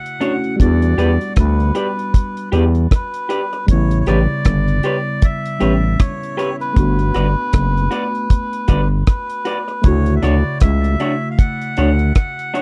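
Lovers rock reggae at a relaxed 78 BPM in D major, this romantic, sweet excerpt moves with a gentle swing through Dmaj7, Em7, A9 and Gmaj7. A reedy, breathy melodica carries the melody with a nasal edge and a touch of tape echo, sitting in a narrow range from B4 to F#5. Beneath it, a worn, slightly out-of-tune tine electric piano supplies barky, lightly overdriven accompaniment coloured by phaser and tape echo. The dry, dark drum kit sits up front with a tight kick, hi-hat and rim click, while a thick, growling FM bass enters at 0.6 seconds with sustained notes and a fast attack. An electric guitar through a small old amp adds slightly broken-up, lo-fi, compressed stabs. The whole has the close, dry feel of a 1970s studio recording with little reverb.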